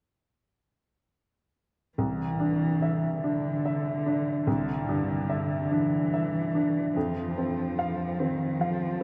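Neoclassical piano and strings in a slow, rubato 6/8 at 49 BPM, this intimate, tender fragment cut from a longer piece pairs a woody, boxy upright piano accompaniment spanning C2 to F5 with a dark, veiled muted cello second line bowed con sordino with vibrato and portamento, both up front from 2.0 to 9.0 seconds over Cadd9 moving to F5, set in a vast, echoing cathedral reverb.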